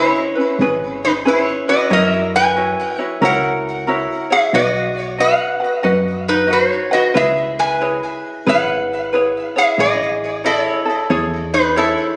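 A bright, nasal resonator slide guitar played with fingerpicks sits up front with digital delay on the melody from the first second, over lightly fingerpicked ukulele and a punchy, round, dark FM bass, giving this relaxed, languid Hawaiian excerpt a swung feel that drifts through C#m7, F#7, B and Amaj7 in a moderate echo-chamber reverb, captured on a phone in the room.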